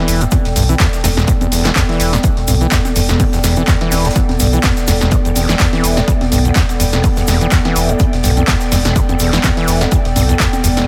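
Over a swung sixteenth-note groove in four, this raw, hypnotic acid house cut has an overdriven electronic kick and a punchy analog drum machine of congas, handclaps, hi-hat and snare, both re-recorded in a large room, while a very quiet big rock drum kit adds hi-hat and snare, a grainy egg shaker sits in the background, a squelchy, resonant overdriven acid bass riff with a touch of digital delay rides above a deep, round analog bass, and a warbly tape-like pad holding an Em7 chord and an airy breathy pad with a moving notch pump with the two basses in a dry mix.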